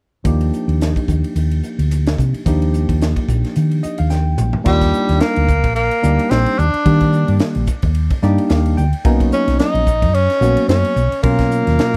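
Electric jazz fusion at 109 BPM in 4/4, with a light swing on the sixteenths, this slick, soaring passage in Eb major is cut from a longer piece. A barky tine electric piano, clean and bright through a combo amp with a subtle chorus, supplies the chords on Ebmaj9, while a hollow-body short-scale fingered electric bass sits up front with a dark, round, amped tone. A crisp fusion drum kit drives the groove with bright cymbals, a high-tuned snare and a punchy kick in a small, pumping room. The electric piano plays a fill at 3.6 seconds, and the drums add their own fill at 4.1 seconds before a clear tenor saxophone enters at 4.7 seconds to take the solo melody, its soft attack, vibrato and scooped notes sounding distant and roomy yet up front. Another electric piano fill arrives at 8.0 seconds, and the harmony moves to Bmaj9 at 9.1 seconds, all bathed in studio reverb.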